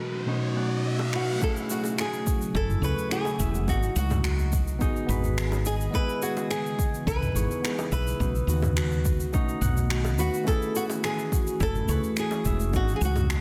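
A round, punchy woody fretless electric bass sits up front from 2.5 seconds in this smooth, relaxed sunset chillout excerpt at 106 BPM in F# dorian, arriving over a deep, overdriven electronic kick drum and a layered deep house kit of finger snaps, shaker and toms with soft clipping on the snare, while tight, high-tuned bongos tap in the background. A bright, fingerpicked flamenco guitar carries the melody, with a thumb-plucked, ringing Celtic harp playing arpeggios and a clean tine electric piano adding accompaniment, all three touched by tape echo, over a dark, ethereal pad of sustained chords with ensemble chorus that opens the piece alongside an electronic riser lasting until 1.4 seconds. The chords move through B7, F#m7, G#m7 and C#m7 in a moderate scoring stage reverb, under a dense, heavily limited modern master.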